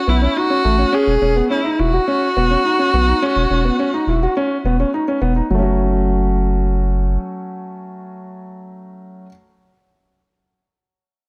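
A bowed solo viola opens this cinematic, intimate piano-and-strings electronica piece at 105 BPM in F# dorian, its close, expressive melody shaded with vibrato and portamento, as a dark, mellow grand piano riff carrying tape echo and a round, deep, nasal analog bass join almost at once over B7sus4 and Esus2 chords during the opening drop, the viola falling away at 4.9 seconds and the bass at 7.2 seconds while the piano carries on past the shift to F#m until 9.3 seconds, framed by a small room's light reverb.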